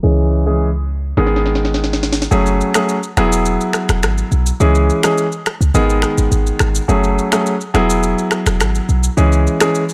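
Afrobeats with a mellow, sultry mood, this short excerpt opens on a present, polished grand piano and a deep, boomy 808-style bass, both up front, under a filter sweep through the first 2.3 seconds. Electronic snare drum, shaker, finger snaps and rim click enter at 1.2 seconds with a drum fill, the snare sharp and produced, before the kick falls away from 2.3 seconds as the chords move through C#m, G#m, F#madd9 and Eadd9. The dry, gritty hardware sound carries little reverb and a low-pass filter.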